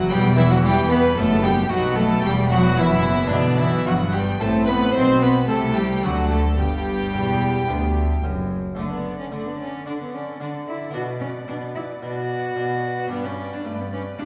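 Heard from further back in a recital hall with a wet reverb, this baroque-style concerto movement has a brilliant, festive mood, moving at 111 BPM in a straight 4/4 and starting in G major before shifting to D major at 8.8 s. A rich, reedy solo cello sits up front with the melody, its gut-string, period-style tone close and prominent in the low-to-middle register. Above it, a warm chamber violin section carries a high melodic line with light vibrato, while a second violin section plays a supporting line beneath. In the background, a dark viola section and a nasal, smooth-topped cello section fill out the accompaniment and bass, joined by a brilliant Italian-style harpsichord with octave strings. A double bass section adds a rich low end until it stops at 8.8 s, where the harmony moves through D, Bm and G to close this portion cut from a longer piece.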